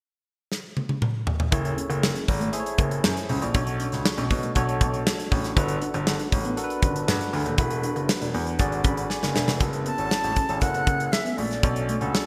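The grand piano is prominent, its clear, present tone carrying the bass line low in the register with long sustain, placed up front alongside the drums. This is a polished 1980s jazz-funk pop excerpt in F# minor at 119 BPM in a straight 4/4, bittersweet and nocturnal in mood. A modern studio drum kit of hi-hat, kick, snare and toms opens with a fill at 0.5 seconds, its tight kick and medium-tuned snare bathed in gated reverb. At 1.5 seconds a barky tine electric piano with subtle chorus, heard through a combo amp, joins the piano and a dark, fingered electric guitar riff that sits very quietly beneath, cycling through F#m7, Bm7, Gmaj9 and E7. After a second drum fill, a breathy, reedy concert flute enters at 9.9 seconds with crisp attack, vibrato and delay for a short melody over the returning F#m7 and Bm7. A lush hall reverb and bright digital 1980s-style production give the whole a glossy, late-night sheen.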